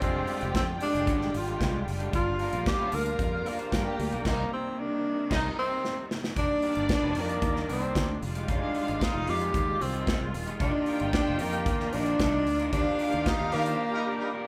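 A breathy, scooped tenor saxophone leads up front over punchy kick and airy drums, a round foam-muted fingered bass, a twangy slightly broken-up guitar, a smooth violin line and lush sustained strings in this sultry, glamorous 113 BPM disco cut in F dorian. Band accents and a drum fill at 5.8 seconds lead on, and a loose, distant horn section stabs in the large room from 13.5 seconds as the bass and drums drop out for a break at 13.8 seconds.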